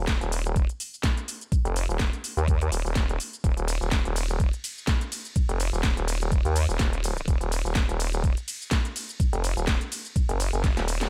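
Aggressive and bouncy, this bass house excerpt drives along at 125 BPM in 4/4 with a 55% swing on the sixteenths, set in Eb minor. A vowel-sweep wobble bass carries the low end from Eb1 to Eb2 across the full 11.1 seconds, its nasal, resonant formant-filtered tone sitting up front with tube saturation, chorus and sidechain pumping giving it a compressed, wobbling bite. An electronic kick drum with a knocking, tape-warm punch sits prominently in the mix from 0.1 to 10.7 seconds. Alongside it, a garage drum kit layers a cracking snare, metallic hi-hats, ride cymbal and cabasa at a lower level in the background. The dry sound carries little reverb, and the passage closes with a drum fill from 10.6 seconds.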